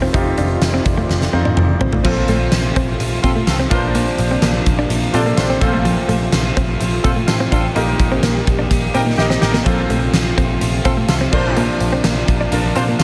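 A polished, glossy mix with light small-room ambience carries this romantic 1980s-style pop clip at 126 BPM, where a huge arena drum kit with punchy kick, fat gated-reverb snare and bright cymbals sits up front over round, foam-muted picked bass, brilliant grand piano accompaniment with a fill at 8.7 seconds, a clean chorus-and-tape-echo guitar riff, a detuned sawtooth pad, a biting overdriven guitar entering at 2.0 seconds and vintage horn stabs arriving at 3.2 seconds, all moving mostly between F/Bb and Bbadd9.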